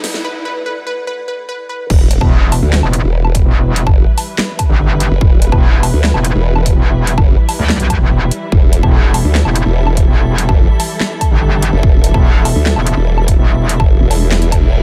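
A detuned formant-sweep wobble bass, joined at 2.2 seconds by a bright, saturated metallic wobble bass, drives this aggressive, heavy half-time dubstep passage at 145 BPM in E minor; a lush, wave-folded unison pluck with dub echo and a riser open the build-up before the drop at 1.9 seconds, where a punchy, up-front electronic kick joins a tape-warm dubstep kit with a huge snare, metallic hats, handclaps and woodblock, while veiled, con sordino studio strings and a cloudy granular pad pump in the background under digital ambience until a reverse cymbal at 14.5 seconds.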